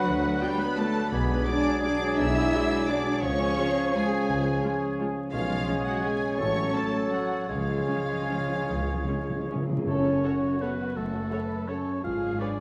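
A dark, sweeping classical passage in F# minor opens with the orchestra already in motion in a rubato 3/4 at 143-185 BPM: lush, vibrato-rich violins carry the melody above a shadowed second violin line, a mellow, hollow flute and an oboe, while a tight French horn section holds sustained chords, a distant trumpet section adds soft stabs, a bassoon accompanies, a ringing harp plays arpeggios, violas sit very quietly underneath from 0.4 s, and cellos, double basses and a punchy tuba anchor the bass, with hard-mallet timpani entering for a fill at 7.5 s, the whole set in a reverberant scoring-stage space with vinyl crackle.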